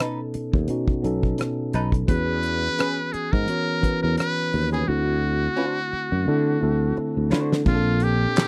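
A short, soulful late-night slice of neo-soul R&B opens with a damped 1970s drum kit, a worn, slightly out-of-tune tine electric piano and a dark, hollow-bodied archtop guitar picking a clean second line colored by wah. A growly, punchy fretless bass joins almost at once, sitting up front with a bright, amped edge beneath the lazy sixteenth-note swing. At 2.1 seconds a trumpet with a metal mute takes the melody, buzzy and thin yet forceful, with vibrato, scooped notes and a smooth top in a pop-style solo voice. The drums bring a fat snare, tight kick, dark cymbals, hi-hat, rim clicks and handclaps, and a fill runs from 4.9 seconds as the harmony moves from B7 through E6 and D7 toward Bbmaj9. The dry, close recording keeps every part intimate and present, in the manner of a 1970s studio.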